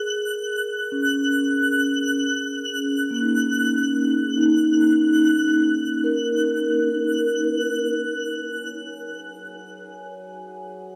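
Ambient music in free time and F# major, peaceful and weightless, with a soft-mallet vibraphone fading in on mellow, ringing arpeggios over an F#6/9 chord, up front and trailed by a diffuse delay, while a bright granular texture twinkles high above with an octave-up shimmer, lush chorus and its own reverb. At 8.1 seconds the harmony settles onto Gbsus2, and at 8.6 seconds a resonant drone of sawtooth and sine tones swells in slowly, its overtones moving under chorus and reverb. The whole excerpt sits in a dreamy mix steeped in a lush hall reverb.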